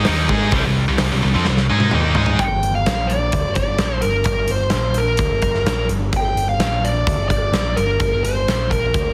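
A dark, bluesy overdriven lead guitar carries the melody from 2.4 seconds in this menacing, heavy hard rock excerpt at 128 BPM in G minor. It sits up front over a growling overdriven electric bass and a big, mid-forward acoustic drum kit with a punchy kick, a medium-tuned snare and a rolled-off top, taking over from two bright, scooped high-gain guitars, one up front and one in the background, that play the opening riff until a drum fill at 1.5 seconds leads into the change. Light reverb and heavy compression give the whole a radio-like sound.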